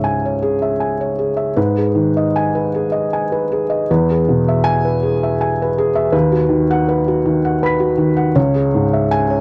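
A rubato 3/4 sway at 79 BPM carries this peaceful, intimate neoclassical minimalist piano excerpt in E major, where a solo felt-muted upright piano, dark and mellow with thick felt and audible action noise sitting up front, moves from C#m through G#m, E and B/D# before returning to C#m at 8.4 seconds, spanning C#2 to B6 in a dry, close 1970s-style studio sound with light reverb.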